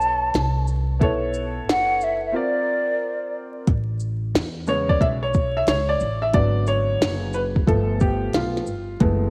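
Swung sixteenths give this cool jazz-hop excerpt a relaxed, laid-back lean, set by a minimal electronic drum kit with a soft kick, tiny snare, clicky hats and shaker, alongside a dark, woody pizzicato upright bass. A breathy, hollow concert flute with vibrato carries the melody until 3.4 seconds, over a slightly detuned vintage upright piano that takes a solo from 3.7 seconds. An echo-chamber reverb and vinyl crackle lend the close, up-front mix a dusty, mellow glow.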